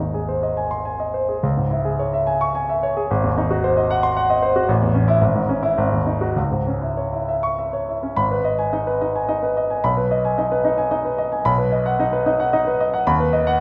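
Stormy and passionate, this short classical excerpt is a virtuoso piano study in 3/4, played with a rubato feel that lets the pulse stretch and push. A solo grand piano carries the whole piece from 0.0 to 13.6 seconds, spanning a broad range from G#1 in the deep bass up to C#6. Its tone is polished and present, sitting up front with a short sustain that keeps each note distinct. The harmony moves through brooding minor-key chords before shifting to a new tonal center at 8.2 seconds, where a second section begins. The instrument sounds like it was captured in a church or concert hall, with a wet recital hall reverb lending the passage a spacious, resonant setting.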